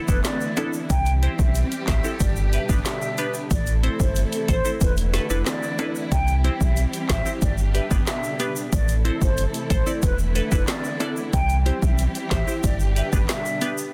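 A straight 92 BPM dancehall groove in 4/4 runs on a deep house drum kit up front, with a punchy kick, woody snare, dark hats, handclaps and rim clicks, while a quieter egg shaker and timbales played with hard hands add acoustic color and a full sine sub bass with octave anchors the bottom. Over a looping E7sus4, C, G, Am progression, lush bowed symphonic strings hold sustained chords with vibrato and portamento under sidechain pumping, alongside a crystalline wavetable pluck that also pumps, shaped by chorus, ring modulation and a filter sweep. A distant, airy concert flute carries the straight-toned, hollow melody through digital delay, giving this hypnotic, tough fragment of a longer piece a dry, dense and heavily limited finish.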